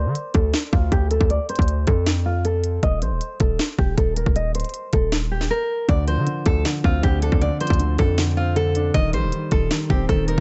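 Dark, eerie trap hip hop at 157 BPM in a half-time feel in D phrygian, cut from a longer piece, where a fingerpicked nylon-string guitar melody, low-passed and trailed by delay, floats over a saturated, heavy distorted 808-style bass and an up-front electronic trap kit with hard-clipped kick, sharp snare and crisp hats, all in a small room with a dulled top end, as a filter sweep runs through the first 5.9 seconds, closing with a brief silent gap from 5.5 seconds, before a mellow, vintage-toned grand piano with audible action noise joins at 5.9 seconds.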